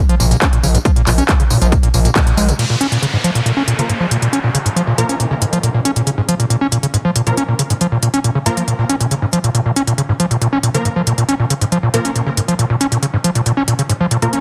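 An overdriven acid bass riff and a techno drum kit of crash, handclaps, hi-hats and tambourine open this dark, relentless cut of driving peak-time techno at 138 BPM in Bb minor, straight 4/4 and pushed hard by sidechain pumping. The squelchy, resonant acid line pairs filter-plucked square-wave tones with distortion, vintage 12-bit sampler grit and digital delay, sitting up front, while the overdriven kit keeps smooth hats in its layered electronic mix. For the first couple of seconds, a heavy, overdriven kick and a saturated synth bass built from sawtooth, square, sine and oscillator sync, with an evolving filter sweep, add low-end weight, and the band hits an accent at 2.2 seconds. A downlifter effect then marks the shift into the second section, and from 3.8 seconds a thick, detuned unison rave stab with chorus, built-in reverb and delay cuts through with aggressive, decaying sawtooth hits. 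A lush hall ambience surrounds the heavily compressed, radio-like sound of this excerpt from a longer track.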